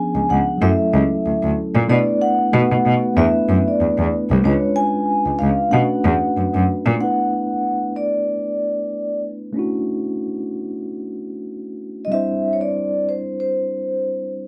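A dry, close 1970s-style studio sound frames this soulful, introspective R&B excerpt at 94 BPM in 4/4 with a light sixteenth-note swing, moving from B dorian to B phrygian at 7.0 s. A metallic, ringing vibraphone played with soft mallets carries the airy melody with a slow motor vibrato, over clean, mellow tine electric piano chords that run through C#7b9, F#m7 and Bm9 before settling on Bm11 and Cadd9. A bright, focused bowed cello with vibrato plays the bass line up front from 0.2 s until 6.9 s, leaving the vibraphone and electric piano for the second half.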